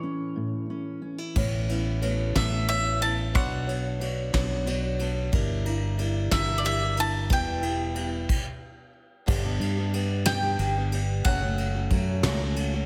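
Set in moderate concert-hall reverb with a big arena sound, this nostalgic, warm indie folk excerpt in a straight 6/8 at 61 BPM opens with a bright, double-strung bowl-back mandolin melody over a dark, woody fingerpicked steel-string guitar carrying slapback echo, until at 1.4 seconds a picked steel-string guitar with audible finger squeak and its own slapback echo, an up-front fingered electric bass and a soft brush kit with dark cymbals, fat snare and tight kick join to build the arrangement through chords such as Aadd9, Bmadd9 and Gm6, pausing for a stop at 8.3 seconds before moving on to G and F#m.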